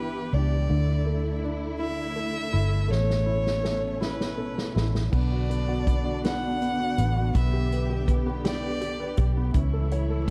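Tender and heartfelt, this six-eight pop ballad sets a focused, bowed solo violin melody with vibrato over clear, short-sustained baby grand piano and a lush, distant string section holding sustained chords, anchored by a round, foam-muted electric bass sitting up front. A natural country drum kit with a punchy kick and medium-tuned snare enters at 2.9 seconds with a fill that runs to 5.1 seconds, and the violin stops at 9.2 seconds. The dark production carries studio reverb and vinyl crackle.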